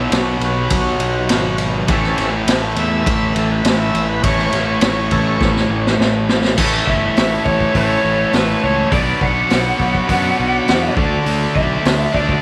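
A gritty, up-front mix with light studio reverb carries this brooding classic rock cut from a longer piece at 102 BPM in a straight 4/4. A double-tracked, sludgy distorted guitar riff and a growly fuzz bass churn alongside a raw garage drum kit with a punchy kick, saturated small-room snare and rolled-off top, while a bright, shouting tonewheel organ through a slow rotary speaker takes a solo from the background until 6.6 seconds, capped by a drum fill from 5.4 seconds. At 6.9 seconds a lo-fi, overdriven lead guitar through a small cranked amp enters with a picked melody over chords moving through Bm toward D.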